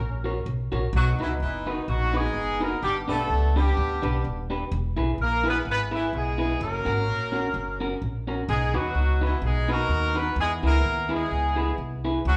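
Cheerful and joyful, this ska excerpt moves at 127 BPM in 4/4 with a light swing on the eighth notes, centred on B major. A tight horn section carries the melody with octave doubling and a light vibrato, sitting up front in a pop-style blend. Alongside it, a picked electric guitar plays accompaniment with a compressed, slightly broken-up edge. The pizzicato upright bass, woody and steel-strung, anchors the low end up front alongside the horns. All three parts play together from the start in a large studio with a wet reverb, the horns and bass running to about 12.4 seconds and the guitar to about 12.2 seconds. The chords move from F# through B, G, E and back to F#, B and E.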